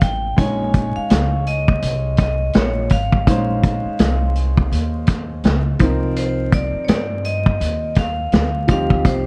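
A swung jazz-hop groove opens the clip, with a vintage drum kit sitting up front: a tight kick, a medium-tuned snare and hi-hat, all roughened by gritty 12-bit sampler texture and a rolled-off top, beside a thumpy pizzicato upright bass on gut strings. A bright, ringing vibraphone played with hard mallets carries the melody through an analog delay, while a clear, woody upright piano enters at 0.4 s with minor-eleventh chords that change at 5.8 s. The mood is cool and mellow, framed by light reverb, a dark, warm production and vinyl crackle in this short section cut from a longer piece.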